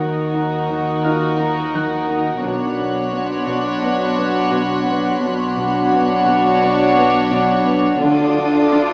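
Set in a straight 4/4 at 86 BPM, this tense, eerie suspense film score excerpt floats on soft, sul tasto strings: a violin section carries the melody over a second violin line, background violas supply accompaniment and background cellos play a riff, a dark, intimate chamber cello section and a dark double bass section hold the bass, while a glassy, ethereal glass harmonica sustains beating chords, a brilliant, very quiet grand piano adds texture until 8.1 s, and a dark, close high violin section enters at 2.4 s, all heard from further back in a stone room through a small speaker as the harmony moves from D#m through Bmadd9 to Dm.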